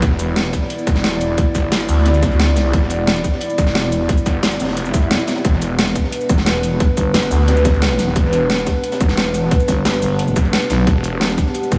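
A mechanical, aggressive stretch of dark technical drum and bass at 177 BPM in E phrygian opens with a tight, overdriven electronic kick up front, a snarling distorted saw bass, a moody, wave-folded analog pad pumping under sidechain with chorus, a dubstep kit with a huge snare and metallic hats, and a very quiet, gritty breakbeat kit, while a background swell appears at 4.9 seconds and a thick FM bass growls in at 7.0 and again at 9.7 seconds inside a dreamy mix soaked in reverb.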